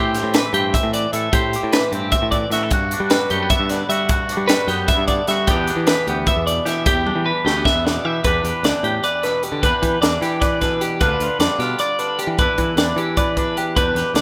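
This rough home demo mix carries light reverb and a small room ambience, capturing a restless, intricate slice of math rock and midwest emo cut from a longer piece. The tempo sits at 304 BPM counted in eighths, in a straight 7/8 feel centred on E minor, with the tuning set slightly sharp at A4 = 441 Hz. Up front, a compressed twelve-string electric guitar spins clean, bright arpeggios through spring reverb, while a twangy electric guitar, colored by phaser, fills in accompaniment across a span from E2 to D5. A modern picked electric bass with a growly, punchy tone anchors the low end from D2 to G3, and a crisp fusion drum kit, entering at 0.1 seconds, pumps in its small room with a high-tuned snare, punchy kick, hi-hat and toms. The harmony moves from Am7 through Gmaj7 to Em7, and a drum fill from 7.1 to 8.2 seconds carries the music into a second section where G7/D briefly appears before settling back on Em7.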